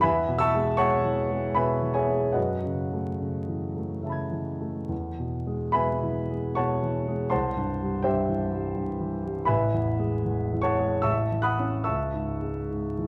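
The recording has the crackle of vinyl over a grand piano that sits up front, its warm, open tone carried by a wet recital hall reverb with a decay of 1.6 seconds. This is impressionist solo piano in the classical tradition, dreamy and serene, moving in 3/4 with a rubato feel somewhere between 69 and 86 BPM. Set in E major and tuned to A4 = 439 Hz, the piano plays alone throughout the 13.1 seconds, ranging from A1 up to G#6. The harmony drifts through colorful extended chords, opening on E6, passing through F#m11 and E69, then turning to an unexpected C at 7.3 seconds before settling into Amaj9, A and finally C#m. Cut from a longer piece, the passage feels like a suspended, floating moment rather than a complete statement.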